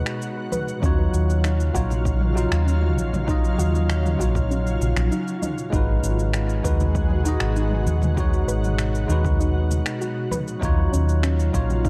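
A straight 4/4 groove at 98 BPM sets a relaxed, warm sunset chillout mood in Eb minor. This short excerpt is cut from a longer piece. An overdriven, punchy electronic kick and an up-front, round hollow-body fingered electric bass enter together at 0.8 seconds. They sit beneath a layered deep house kit of cabasa, finger snaps and toms, which also carries overdrive and small room ambience. Very quiet, ringing congas add acoustic texture from 0.5 seconds. Above them, a bell-like, clean tine electric piano plays accompaniment through tape echo. A shimmering, ethereal pad holds sustained chords with a slow attack, octave-up shimmer and chorus, and a soft, gentle pluck in the background plays arpeggios with chorus and echo. The chords move between Abm7 and Ebm9 in a dark production with light reverb.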